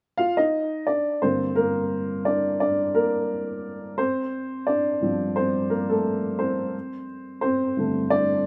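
Bittersweet yet driving, this short pop cut from a longer piece moves at 87 BPM in G minor with a light sixteenth-note swing. A lone upright piano, dark and woody with a boxy, up-front presence, plays from 0.2 seconds through 8.5 seconds across a range from G2 to F5, taking a solo from 1.2 seconds as the harmony passes from Dm to Gm, Dm7 and Gsus24. Light reverb adds a little air to an otherwise dry outdoor sound.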